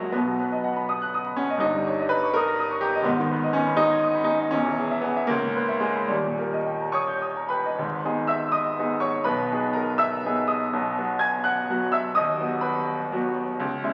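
A bright grand piano carries this stormy, passionate romantic character piece alone, its brilliant, open tone sitting up front with a long sustain that rings from deep bass notes to high treble. The music moves in 6/8 with a free, rubato feel, pressing and yielding as it unfolds. The harmony darkens and shifts through minor chords before reaching a tense dominant, and a new section begins at 7.8 seconds, turning toward brighter major harmonies by the close at 13.9 seconds. A reverberant recital hall surrounds the instrument, and the playing comes through the crackle and patina of a very old 78 rpm record. The passage is cut from a longer piece, so it ends mid-thought.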